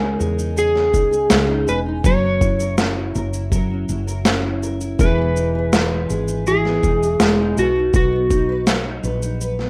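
Acoustic pop with an easy-going, sunny mood at 81 BPM in B major, this brief excerpt moves through C#madd9, F#7 and Emaj7 before resolving to B. An up-front, dark, slightly broken-up electric slide guitar, played with fingerpicks and bathed in plate reverb, carries the melody until 8.6 seconds. Beneath it sit a bright, fingerpicked, double-tracked nylon-string guitar, a growly, round fretless bass with analog chorus, and a gritty, pitched-down boom bap sampler kit, entering at 0.2 seconds with a thumpy kick, high-tuned snare and shaker, all in a rough home-demo mix.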